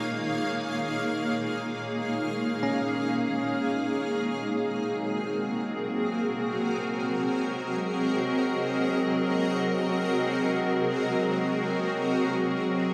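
A concert hall reverb with a 2.0-second decay surrounds this peaceful, luminous ambient passage, which floats in free time and is cut from a longer piece. Up front, a granular cloud pad holds sustained chords throughout, its cloudy, blurred, full-bodied tone built from detuned sine voices that bloom slowly and linger on long releases. Behind it, a bright, bell-like tine electric piano plays clean arpeggios through phaser and tape echo, then falls away at 4.0 s. The harmony moves from Absus2 to Ab7. At 5.1 s a nasal, string-like drone enters in the background, its detuned sawtooth tone carrying a noise layer, vibrato and a tense edge that lingers beneath the pad to the close.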